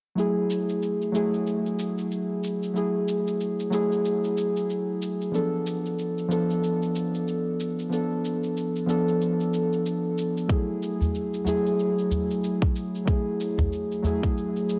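A moderate, lush hall reverb surrounds this short organic downtempo passage, cut from a longer piece, giving it a mystical, warm air. At 93 BPM in 4/4 with a swung sixteenth feel in F# minor, muted felt-like synth keys carry the accompaniment from the start, up front yet soft and intimate, blending triangle and sawtooth tones with a noise layer, a fast attack and a dark, decaying body shaded by chorus, low-pass filtering, delay and sidechain pumping. A faint, tape-tinged electronic shaker runs beneath them, filtered and set in a small room. The harmony moves from F#m9 to Bm7b5/F and back to F#m9. A tight, produced electronic kick arrives up front at 10.5 s, and a deep udu, close and dry, joins at 11.0 s for the closing seconds.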